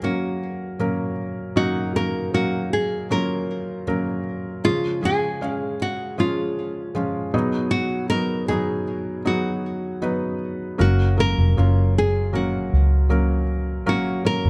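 Tender and hopeful, this short pop ballad excerpt moves at an unhurried 78 BPM in a straight 4/4, set in F# major. A fingerpicked nylon-string guitar carries the melody in a narrow middle register, its classical tone sitting up front. Beside it, a felt-muted upright piano plays the accompaniment with a soft, intimate, mellow sound, the thin felt and audible action noise giving it a close, homely character. The harmony moves from F# to C# and B6 before returning to F# at 10.8 seconds, where a vintage muted fingered electric bass enters with a dark, round, foam-muted tone, amped and placed prominently, louder than the other parts. Light reverb surrounds the trio.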